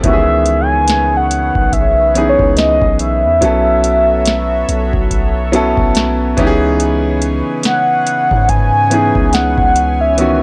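A dry, gritty cassette-tape sound frames this dreamy, smooth contemporary R&B excerpt at 71 BPM in E major, where a mellow, horn-like synth lead with chorus and vibrato carries the melody over clear concert grand piano, a shimmering chorused pulse-width pad, a long sustained 808-style bass and a booming analog drum machine with deep kick and metallic hats, moving through C#m7, B9sus4 and Emaj9 with a gentle 16th-note swing.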